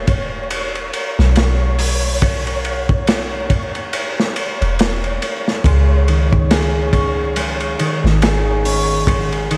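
Dark and smoky, this trip hop excerpt moves at 70 BPM in 4/4 with a swung sixteenth feel, built on an up-front, crunchy breakbeat kit of tight kick, medium-tuned snare, hi-hat and dusky ride whose saturated, gritty tone has a rolled-off top. Beneath it a soft, round 808-style bass hums deep and decaying, while a flickering, granular texture of detuned tones sits in the background with its own reverb as the harmony shifts from an E5 chord to C#5 at 5.6 s. At that moment a thumb-plucked concert harp joins with ringing arpeggios trailed by delay, all set in a dreamy, reverb-soaked church space with a bed of vinyl crackle.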